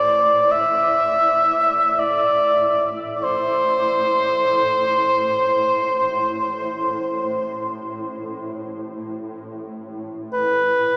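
Caucasian folk lament in free time and A minor, this mournful, longing 11-second fragment of a longer piece sets a solo cor anglais up front, its warm classical tone carrying a light vibrato and an analog delay as it sings between B4 and E5. Beneath it, a granular cloud pad holds a soft, detuned drone on A2, blurred and slowly evolving with its own reverb and a subtle chorus. The whole dreamy mix is soaked in a huge ambient reverb with a long 7.5-second tail, yet it comes through with the boxed-in character of a small speaker.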